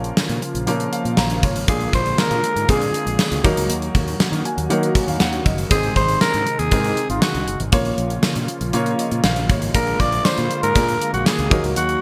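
1980s-style pop in Bb minor at 119 BPM, this dramatic, nostalgic excerpt moves at a straight 4/4 pace through a short progression that returns to Bbm and Bb7 before landing on Ebm. A gated drum kit sits up front with a punchy kick, a medium-tuned snare, hi-hat and tambourine, its bright stone-room sound clipped short by the gate. Underneath, a fretless electric bass plays a warm, direct and amped line, while a dark baby grand piano supplies mellow accompaniment with short sustain and adds fills at 0.7 and 4.2 seconds. A brassy, detuned sawtooth pad holds soft-attack chords in the background, colored by chorus, vibrato and a moving notch. From 1.7 seconds a raspy, growling alto saxophone takes the lead up front, gritty yet smooth on top with light vibrato and delay, all set in a polished, bright digital production with moderate plate reverb.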